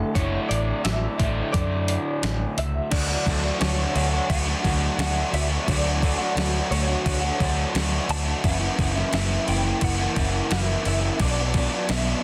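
A steady, straight 4/4 pulse at 87 BPM carries this hazy, dreamy shoegaze and dream pop fragment in D major, cut from a longer piece. A crisp 8-bit drum machine sits up front, its thumpy kick, medium-tuned snare, hi-hat and crash given an overdriven edge and the sound of a large room. Beneath it, a vintage fingered electric bass plays dark, round, foam-muted low notes through an amp. A crunchy overdriven guitar, double-tracked and picked, drives the riff with a chorus-tinged heft, while a bright, clean, direct-recorded guitar carries the melody in the background, compressed and shimmering through ensemble chorus and analog delay. The harmony moves from Asus4 to Dmaj7 at 2.9 seconds, then through F#7 to Bm near the close, all wrapped in digital ambience and a dense, heavily limited modern master.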